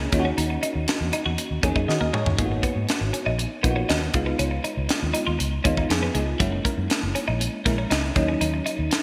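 A straight 4/4 groove at 120 BPM in G# minor drives this slick, urban slice of polished 1980s jazz-funk pop, where a crisp fusion drum kit with a high-tuned snare, punchy kick and gated reverb sits up front, a dark, round, foam-muted fingered electric bass anchors the low end, a bell-like FM electric piano sparkles through tremolo and lush chorus, and a bright, twangy twelve-string electric guitar picks a clean, compressed riff with subtle chorus, all moving through D#m7, G#m9, C#9 and F#7, with a drum fill at 1.9 seconds, inside a lush hall reverb and bright 1980s-style digital production.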